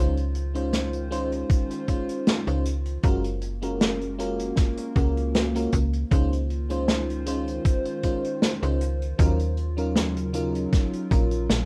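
Vaporwave at 78 BPM in Db major, this dreamy, woozy fragment from a longer piece sways with a light swing and a slightly flat tuning, moving through Dbmaj9, Gbmaj7 and back to Dbmaj9 before settling on Ebm9 at 9.2 seconds. An FM electric piano with a soft pad layer carries the accompaniment, its lush, fast-attack tone colored by analog chorus and tape echo. Beneath it, a warbling, detuned tape-like pad holds sustained chords with a slow attack and long release, softened by chorus, phaser and its own reverb into a nostalgic, mellow haze. A snappy FM bass with a metallic attack sits up front, and a distant, roomy acoustic kit played with bundle sticks supplies hi-hat and a medium-tuned snare. A thumpy, sampler-style electronic kick joins at 1.5 seconds, and the whole thing has the rough, light-reverb feel of a home demo dubbed to cassette.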